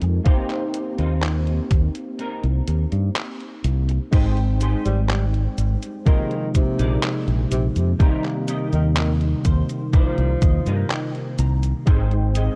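A breathy, whispered tenor saxophone enters at 4.9 seconds with a mellow, intimate jazz melody and tape echo, floating over a nostalgic, faded vaporwave groove at 62 BPM in Eb major, drifting through Abmaj7 and Bb9sus4 chords. A barky, overdriven tine electric piano with ensemble chorus carries the accompaniment, while a dark, scooped semi-hollow electric guitar plays a clean riff with chorus, 12-bit sampler grit and tape echo, and a clean electric guitar fill arrives at 9.0 seconds. Underneath, a warm, up-front fingered electric bass sits with a thumpy electronic kick that drops out at 2.2 seconds, joined by a detuned 8-bit drum machine playing cabasa, handclaps, hi-hat and crash cymbal, all heard through a dry, cassette-tape sound in this excerpt from a longer piece.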